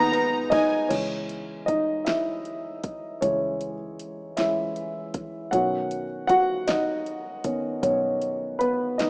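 In a slow, lilting six-eight sway, this dramatic, aching pop ballad excerpt opens with a reedy, gut-toned violin section and a detuned sawtooth pad with chorus sounding together with the woody upright piano for a brief moment before the piano takes a solo up front from 0.9 seconds, underpinned by a round, foam-muted electric bass in the background and a layered electronic drum kit with deep kick, fat snare, metallic hats, crash and ride, all in a rough, lightly reverberant home-demo mix with a small-speaker sound.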